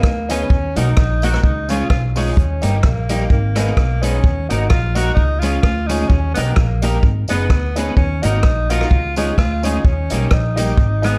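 Ska at 128 BPM with a light swing, mischievous and driving, cycling through Eb minor, Db, Eb and Ab minor in an excerpt cut from a longer piece. A breathy, whispered tenor saxophone carries the melody with vibrato, scooped notes and a slapback echo, over a woody pizzicato upright bass and a tight, up-front vintage kit of kick, hi-hat and rim click, while a background upright piano plays stabs with long sustain. From 0.3 s a slightly broken-up electric guitar adds compressed, picked accompaniment through tube saturation, analog chorus and slapback echo, and a jingly tambourine sits far back, all in a dark production with small-room ambience.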